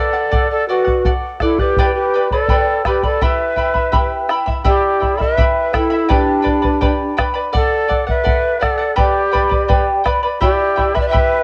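An excerpt of Andean folk in E minor at 83 BPM in 2/4, festive yet melancholic, opens with a mellow pan flute carrying the melody with chiff and vibrato over a breathy large quena's second line, softened by tape and rolled-off highs, while a bright, fingerpicked charango shimmers on double strings up front, a deep, dry bombo joins at 0.3 seconds, and a light small-room ambience frames the homespun cassette sound as the chords move from D through G to E minor.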